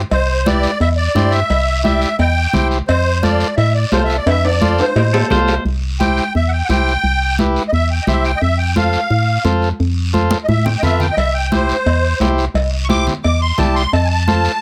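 Cumbia with a sunny, joyful spirit, this short cut from a longer piece moves at a brisk, straight pulse over a simple swing between two chords. A dark, hollow FM bass with an organ-like, percussive attack sits up front. Beside it, a buzzy vintage combo organ fills in the accompaniment. A reedy musette accordion carries the melody with a shimmering, wet tuning, and at 5.7 seconds it breaks into a solo that runs to the end. Close, dry congas ring steadily, a raspy guiro scrapes quietly beneath, and band-limited metal-shell cowbell and timbales drive the opening, drop out after a drum fill, then return at 11.2 seconds. A bright, scooped clean electric guitar adds a brief picked line at 5.1 seconds, and light reverb keeps the detailed sound intimate.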